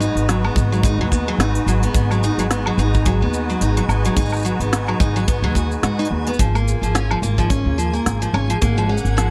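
Folktronica at 108 BPM in G# dorian, autumnal and intimate, with a gentle 16th-note swing and a dark production under light reverb, moving from G#m7 to F#maj7/G# at 6.4 seconds. Up front, a picked steel-string acoustic guitar plays arpeggios roughened by vintage 12-bit sampler grit and digital delay, over woody pizzicato upright bass, while a reedy, shimmering musette accordion holds sustained chords. An organic electronic kit of smooth hats, shaker, woodblock and woody snare carries the groove, a tight, polished kick joins at 0.6 seconds, and a reversed, granular, dreamy texture swells in the background of this excerpt.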